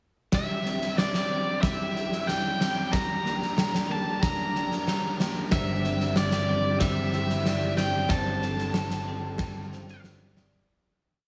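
A huge arena drum kit drives this short, cinematic and melancholic post-rock piece at 93 BPM with a march groove, its punchy kick and fat snare up front in a pumping hall sound, as an overdriven, biting lead guitar states a motif-based melody through tape echo. Beneath them, a clean electric guitar picks twangy arpeggios in the background, and an icy, crystalline glass pad enters very quietly at 1.2 seconds with sustained chords over harmony moving between C/G, Gm and F/G. At 5.5 seconds a growling fingered bass adds driving eighth notes and a mellow soft-mallet vibraphone rings out an echoing ostinato, before the whole piece fades out from 8.1 seconds in light reverb.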